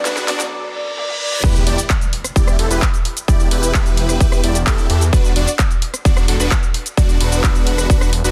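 Festival progressive house with a powerful, emotional feel: this excerpt opens on a short build-up where a breathy, flute-like synth lead with tremolo and dub echo floats over a dark, mellow grand piano in the background, while drum fills, a riser and a reverse cymbal gather energy. At 1.4 seconds the drop lands with an electronic impact and a punchy, overdriven kick up front, which now anchors the big-room kit that has played since the opening, with its huge snare, claps, hi-hats, cabasa, rim clicks, toms and crash. Huge, lush supersaw chords and a thick, saturated detuned saw bass pump hard against the sidechain, all inside a filtered digital ambience.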